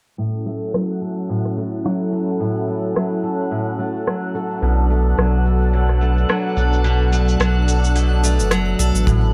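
The excerpt opens at 0.2 s with a bright, up-front picked steel-string acoustic guitar playing arpeggios, its fresh strings carrying audible finger squeak and a touch of tape echo, over a smooth, detuned sawtooth pad holding sustained chords with chorus. This is a playful, pastoral piece of folktronica in A major at 108 BPM in 4/4, with a gentle 16th-note swing, moving from A6 to Bm7. Tape-warm electronic cabasa and rim click keep time, and a filter sweep runs across the drums and the guitar through the section. From 1.0 s a twinkling granular texture adds a sparkling, FM-tinged shimmer high above, its built-in reverb trailing behind it. At 4.6 s a deep, round sine sub bass arrives up front with tube saturation, and a tight, small-room kick drum sounds briefly in the background near the end, all within a lightly reverberant, low-pass-filtered mix.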